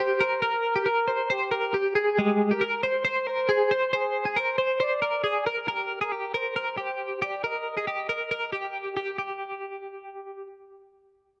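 An up-front twelve-string electric guitar rings out clean, twangy and compressed, picking arpeggios through tremolo and analog delay in this youthful, bright indie pop passage at 137 BPM in Eb major. Above it, a mellow, breathy flugelhorn sings a whispered, intimate melody with gentle vibrato and a soft attack, sounding distant and roomy before it drops out at 8.7 seconds, while the guitar carries on to 10.5 seconds. The harmony moves from Gmadd11 through Ab and Abadd9 to Eb, with light studio reverb on a rough home-demo mix cut from a longer piece.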